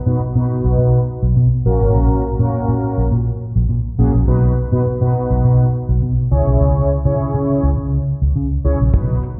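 A foam-muted vintage fingered electric bass anchors this carefree, upbeat dance-pop excerpt, sitting up front with a dark, round, punchy and amped tone that pumps with the sidechain from 0.1 s to 9.1 s. Above it, a mellow synth brass carries the accompaniment with a brassy, sawtooth, detuned sound, fast attack and sustained notes, colored by chorus, phaser, slapback echo and its own sidechain pumping. A filter sweep runs across the whole passage. The piece moves at 103 BPM in a straight 4/4 in B major, with the chords stepping from B to F#, back to B, and then to C#m. A damped 70s drum kit arrives only at 8.9 s, a brief hint of hi-hat and tight, dry kick with a rolled-off top. The sound is that of a live gig heard through a venue's PA, softened by a low-pass filter and a light recital-hall reverb.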